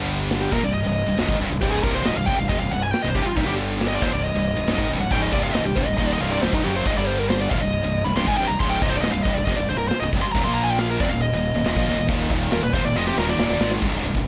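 Heavy metal with an epic, aggressive mood: a dark, up-front high-gain lead guitar carries a solo with tape echo from 0.4 seconds, over three bright picked rhythm guitars, a cranked double-tracked stack guitar, a heavy high-gain guitar in the background and a very quiet distorted one, all playing the riff. A growly, fuzz-laden fingered electric bass and a big acoustic drum kit with bright cymbals, a medium-tuned snare and a punchy kick drive underneath, with a drum fill at 13.0 seconds. The harmony sits mostly on C minor with brief power-chord turns, in a light reverb, and it is cut from a longer piece.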